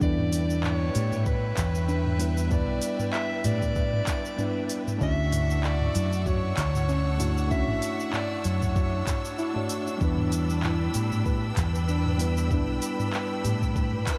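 Sunset chillout with a wistful mood, cut from a longer piece: a bright soprano saxophone sings a scooped, lightly vibratoed melody with delay until 9.7 s over a worn, slightly out-of-tune tine electric piano. A rich bowed string section holds sustained chords, and a soft round pluck arpeggiates in the background through lush chorus and delay. Beneath them sits a dark, up-front fretless electric bass with analog chorus, alongside a soft electronic kick and a smooth R&B kit of handclaps, hi-hat, shaker and toms in studio reverb, while a twinkling granular shimmer returns at 10.5 s, all in a dreamy, reverb-soaked mix.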